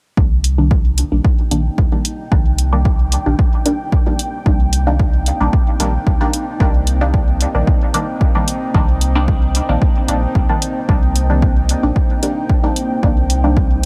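A cavernous digital ambience surrounds this hazy dub techno excerpt in C minor at 112 BPM, where a punchy, up-front electronic kick and an overdriven hi-hat, both re-recorded in a small room, drive a straight 4/4 pulse. A round, soft sub bass and muted, detuned chord stabs carrying phaser, 12-bit sampler grit and dub echo sit on a single Cm7 chord, all pumping against the kick. From 1.4 seconds a moody, full-bodied analog pad with chorus swells in slowly, while a bubbling, resonant stepped-filter texture with built-in reverb hovers in the background.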